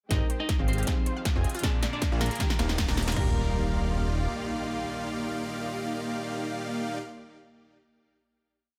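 Future bass in Eb major at 157 BPM, felt in half-time with a light swing, this short, lush and bright piece opens on a build-up with a drum fill that runs to 3.2 s before resolving onto a long final chord. A punchy, tape-warm electronic kick sits up front alongside a big-room dance kit of punchy snare, metallic hats with rolls and crash, all bathed in studio reverb, while a fat, detuned sawtooth bass follows the chord rhythm through Abmaj7, Fm7, Bb7 and Ebmaj9 until 4.3 s. Above them, a huge, compressed supersaw plays syncopated chord stabs in an open voicing, with sidechain pumping, a low-pass filter and digital delay. Beneath it, a soft, round pluck with analog chorus and vintage 12-bit sampler grit holds spread chords, a dark, clean electric guitar repeats an octave riff through delay, a smooth, bowed string section sustains a pad, and an airy, dreamy lead with vibrato doubles the chords. 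A very quiet, wave-folded unison pluck traces an eight-step arpeggio until 3.3 s, and faint riser and impact effects mark the transition from 1.5 s onward, all within a light digital ambience.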